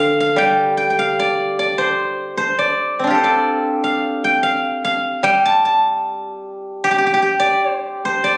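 A steel-string zither, played with fingerpicks and sitting up front, rings out alone with a silvery, acoustic tone across a range from D3 to A5 in this pastoral, serene Chinese traditional fragment in G shang mode, moving in a rubato 2/4 around 75 BPM under light reverb for its 8.4 seconds, cut from a longer piece and captured on a phone in the room.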